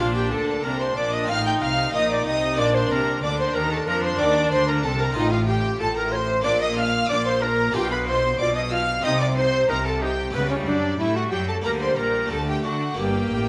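A moderate recital-hall reverb, with a 1.6-second tail, gives this driving, dramatic baroque-style concerto excerpt an open, resonant space, at 92 BPM in a straight 4/4 that moves from Bb toward a close on G minor. A mellow, airy tenor recorder with a soft attack, chiff and expressive vibrato leads the melody alongside a focused, rich violin section, while a second violin line sits smooth and even in the background. A bright, plucked harpsichord and a viola section fill in the accompaniment, and a clear, close double bass section and a lush, distant cello section anchor the bass throughout the 13.5 seconds.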